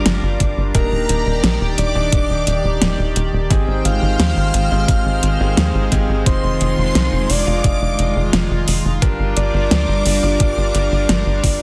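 A driving, cinematic synthwave excerpt at 87 BPM in G phrygian opens on a round, detuned octave-layered synth lead carrying the melody through chorus and tape echo, a shimmering vintage string machine line high above it, a pulsing chorused pulse-width pad holding Gm7, Ebmaj7, Abmaj7 and Fm7 chords, brilliant grand piano stabs in the background and a punchy, up-front sawtooth sequencer bass, before an overdriven pop kit with a fat snare and metallic hats joins at 0.1 seconds and a thumpy sampler-style kick at 0.4 seconds, all in light digital ambience under a dense, heavily limited master.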